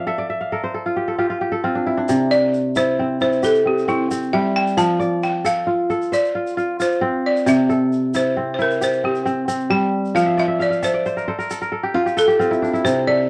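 A woody, buzzing balafon, struck with hard rubber mallets, carries the melody up front in this joyful, flowing piece of West African string and xylophone music, cut from a longer performance. Beside it, a fingerpicked kora spins ringing, crisp arpeggios from its low register up into the treble, opening with a fill before the balafon takes a solo from 2.1 seconds. A grainy tube shaker joins at that point, sitting distant and mellow as if heard across a large room. The kora returns with another fill from 10.2 seconds, while the harmony sways between F and C in a straight 12/8. Light reverb surrounds the parts, and the whole recording has the worn character of old cassette tape, with a warbly pitch drift.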